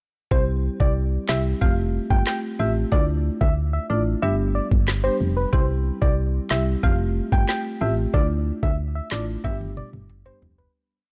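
Dancehall in C major at 92 BPM, summery and bouncy, with a knocking, woody-snared island pop drum kit up front playing a syncopated dancehall beat with handclaps and toms, a punchy, round FM bass driving syncopated low lines, a marimba with medium mallets adding woody syncopated chords under sidechain pumping, and a soft struck synth lead carrying a gentle, keys-like syncopated hook with chorus, delay and vibrato over a C, Fadd9, Dmadd9, G progression, in a dark digital ambience that fades out from 8.1 seconds as a drum fill closes the piece.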